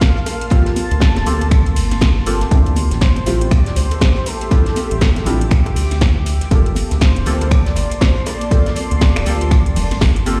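An up-front, overdriven electronic kick drives this hypnotic, late-night deep house excerpt at 120 BPM with a swung 16th feel, joined by an overdriven kit of finger snaps, metallic hats and a punchy snare, a very quiet acoustic soul kit, and bongos and congas in the background from 0.3 s, while a round analog bass enters at 0.9 s with sidechain pumping under dark, wave-folded chord stabs dressed in chorus, phaser, cassette tape and delay, a moody detuned pad with slow attack, reverb and pumping across Gm11, Dm11 and back to Gm11, and a breathy, flute-like synth lead with vibrato, chorus and delay, all heard through a big sound system in a bare room with large studio reverb.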